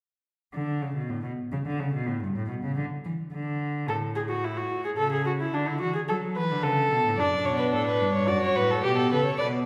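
Stately and joyful, this baroque-style fugue for string quartet moves at 108 BPM in 3/4 in D major, a short passage cut from a longer piece. A single cello opens at 0.5 seconds with a rich, gut-string bass line in period style, and a viola joins at 3.9 seconds with an accompaniment whose airy bow and nasal edge give it a distinct voice. A violin adds a second line from 7.2 seconds, its reedy, up-front tone sitting slightly above the other parts. The harmony moves from D and a rootless G through a brief unharmonized moment before settling among A/C#, D, D/F# and G/B. A recital hall's reverb places the ensemble further back in the room, lending the close-miked bowing a resonant, spacious halo.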